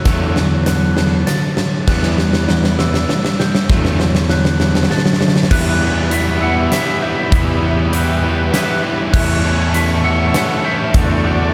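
A brooding, melancholic post-rock passage in E dorian opens with dark, bowed chamber strings holding sustained chords with expressive vibrato in the background. A mellow glockenspiel struck with rubber mallets rings out delayed, bell-like arpeggios, while two picked guitars grind out riffs behind them: one crunchy and overdriven, the other distorted. A fuzz-drenched fingered bass holds a low E, and a huge acoustic arena kit stands up front, with a punchy kick, bright cymbals and a pumping room sound, as the first 5.5 seconds build through a drum fill. Moving at 99 BPM in a straight 3/4, the harmony alternates between Dmaj7/E and Em7 before shifting to Emadd9, A7/E and Dadd9/E. At 5.5 seconds a twangy, slightly broken-up lead guitar enters with a compressed melody, dressed in lush chorus and delay. A hall reverb soaks the whole mix in a dreamy haze, and the passage is cut from a longer piece.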